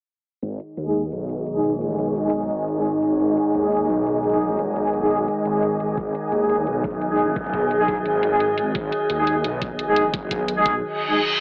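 Tense and futuristic, this short cut from a longer dark technical drum and bass piece sits in a straight 4/4 groove. A snarling, growling saw bass with distortion and sidechain pumping arrives at 0.4 seconds alongside bright, overdriven electronic hi-hats. A metallic, inharmonic drone with an eerie, warbling FM character holds sustained chords up front, carrying chorus, built-in reverb and a filter sweep, while an ethereal, airy pad drifts above it with ensemble chorus and pumping of its own. A mellow, distant brass ensemble plays stabs through a low-pass filter and dub echo, and a knocking, tape-warm kick drum enters at 6.0 seconds. A reverse cymbal rushes in at 11.0 seconds, and the whole mix sits in a moderate plate reverb with a filtered, AM radio tone.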